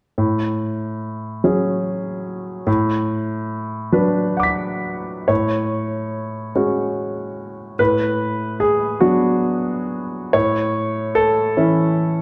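Neoclassical minimalist piano, peaceful and tender, moving at a slow 47 BPM in a rubato 6/8, with uneven beats and tuning set to A4 = 438 Hz. A clear, natural grand piano sits up front as the only voice from 0.2 to 12.2 s, spanning A2 to B6 and cycling through F#madd9/A and Bm/A twice, with a fresh phrase at 5.3 s before it settles on A. A moderate recital-hall reverb and a dark production frame this brief passage cut from a longer piece.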